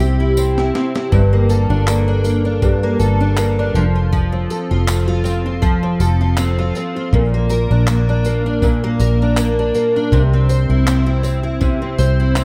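Easy-going and heartfelt, this acoustic pop excerpt sits in a relaxed 4/4 with a gentle swing on the sixteenths. A bright, up-front picked steel-string acoustic guitar carries the accompaniment from the start, its finger squeak audible and its tone shimmering through analog chorus. Beneath it, a dark, round, foam-muted fingered electric bass holds the low end, while a jingly, close and dry tambourine sits in the background. A gritty, compressed breakbeat sampler-style kit enters at 0.6 seconds, partway through a drum fill, bringing a thumpy kick, medium-tuned snare, handclaps and its own tambourine, all carrying a tape-like, small-room character. The harmony moves from C through Gmadd9, F and Bb before returning to C at 10.1 seconds, wrapped in light reverb.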